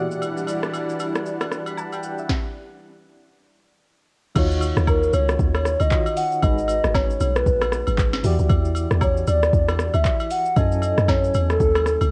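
Amapiano at 116 BPM with a soulful, hypnotic swing, this excerpt opens on tremolo-tinged electric-piano-like synth keys and a lush, detuned unison pad that pumps over Em9 until 2.3 seconds, backed by an overdriven smooth R&B kit of soft kick, sharp snare, claps, hats and shaker plus dry agogo bells and woodblock, before a stop gives way at 4.4 seconds to a drop where a round, deep log drum bass enters up front and a hollow, woody clarinet-like lead with vibrato and tape echo sings over Ebm9, Abm9, Em9 and Gbm9, all carrying the character of a home cassette recording.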